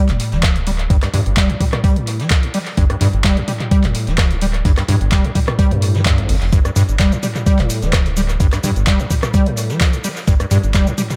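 A squelchy, resonant square-wave acid bass riff sits up front, its saturated filter plucks treated with analog chorus, tape echo and sidechain pumping, over a round, deep analog bass that pumps beneath it on a G5 chord. This trippy, hypnotic acid house clip moves at 128 BPM in 4/4 with a light 16th-note swing, driven by a thumpy sampler-style electronic kick up front and a punchy analog drum machine of handclaps, hi-hat, rim click, shaker and toms carrying tape echo. A very quiet vintage brush kit adds hi-hat and a mid-tuned snare with a rolled-off top, all within an echo-heavy mix with light reverb.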